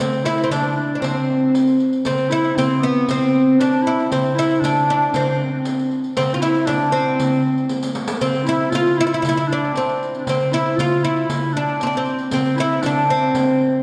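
Arabic maqam ensemble music at 117 BPM in a straight 4/4, hypnotic and melancholic, cut from a longer piece. A warm, woody, fretless oud with doubled strings and a plectrum-plucked attack carries the melody up front with a slapback echo, while a clear, soft-attacked clarinet in classical style traces a quieter second line in the same register. A clay-shelled darbuka with natural skin and a distant riq with bright jingles drive the groove, with a brief drum fill at 7.7 seconds, all set in a lingering concert-hall reverb.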